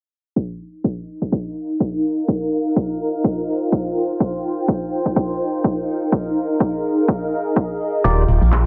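A punchy, tape-warmed electronic kick opens this joyful piano house excerpt at 0.4 s, swung at 125 BPM in Eb major under a filter sweep, joined at 1.2 s by an up-front, cloudy granular pad with built-in reverb and sidechain pumping over Ebsus2, Ebadd9 and Absus2 chords. The move to Ebmaj9 at 8.0 s brings in a dark, hollow FM bass with tube saturation, a brief organ stab with analog chorus, cassette tape and dub echo, shimmering string-machine violins in the background, and a very quiet tight funk kit and tambourine. Analog drum-machine handclaps and hi-hat follow at 8.3 s, all set in light small-room ambience.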